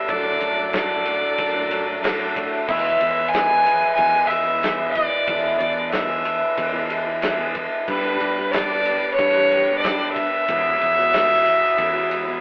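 A straight 4/4 pulse at 92 BPM carries this hopeful, warm passage of folk rock and heartland rock in E mixolydian. A clear, nasal fiddle sits up front with the melody, bowed by one player with light vibrato, while a bright, full-bodied jumbo steel-string acoustic guitar is picked underneath. An accordion holds reedy sustained chords with slow beating, and a round fingered electric bass and a damped 70s drum kit join at 0.1 seconds. The kit brings a tight kick, a medium-tuned snare, and crash and ride cymbals. The harmony moves from D/F# to E, reaches G at 7.9 seconds and settles on Eadd9. The recording has a wet stone-room reverb, a rough rehearsal-room character and a telephone-like sound.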